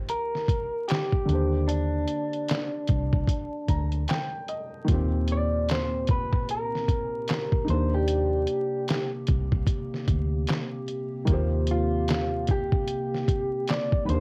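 Crackly home-cassette sound and a small-room reverb frame this cosy, nostalgic lo-fi hip hop excerpt at 75 BPM in Eb major, where a muffled, pitched-down trip hop sampler kit with thumpy kick, snare, hi-hat and handclaps sits up front beside a round, foam-muted fingered electric bass, a slightly broken-up electric guitar through a small old amp carries the melody, a soft felt-muted upright piano accompanies the Eb6 and Cm9 chords and plays a fill at 3.3 seconds, and a deep, detuned analog pad with lush chorus enters at 4.9 seconds.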